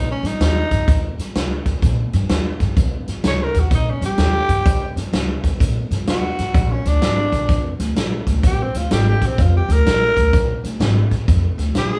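A swung shuffle at 127 BPM in 4/4 drives this gritty, swaggering electric blues fragment, cut from a longer piece. The big-band drum kit sits up front with a punchy kick, a medium-tuned snare and hi-hat, its natural, roomy sound keeping the groove rolling. Beneath it, the upright bass is plucked pizzicato with a woody, thumpy tone from its steel strings, holding down the low end. The tenor saxophone carries the melody as an up-front jazz solo, raspy and growling yet clear, with a light vibrato. The harmony sits on Eb7 before moving to Bb7 at 6.5 seconds, and the band plays live together in a small room with light reverb.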